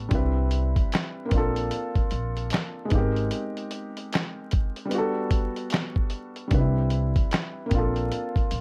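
Dreamy and mellow, this short lo-fi hip hop cut from a longer piece moves with a relaxed, swung 4/4 feel. A felt-muted upright piano sits up front with a soft, intimate tone, its action noise audible and a cassette-tape character on its chords as they drift through lush major-ninth harmonies from Cmaj9 down through Bbmaj9, Abmaj9 and Gmaj9. Underneath, a pizzicato upright bass adds a woody, growly low end. A sampler-style drum kit enters at 0.1 seconds, compressed and pitched down, with a thumpy kick, a medium-tuned snare, hi-hat and handclaps, all given a muffled, tape-warm finish. A break runs from 3.3 to 6.5 seconds, and light reverb and vinyl crackle wrap the whole track in a hazy glow.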